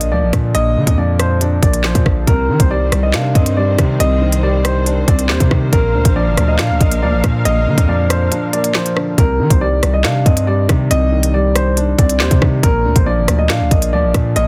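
Hip hop drill with a tense, ominous half-time feel, built on a hard-hitting, sine-toned 808-style bass and an up-front electronic drill kit of hard-clipped kick, woody snare with soft clipping, crisp hats, handclaps and rim clicks, while a dark grand piano carries a long-sustained melody through delay over a felt-muted upright piano with audible action noise, a veiled con sordino string section adds lush bowed chords from 2.3 to 9.1 seconds, and a brief break at 8.3 seconds sits inside a dense, heavily limited modern master.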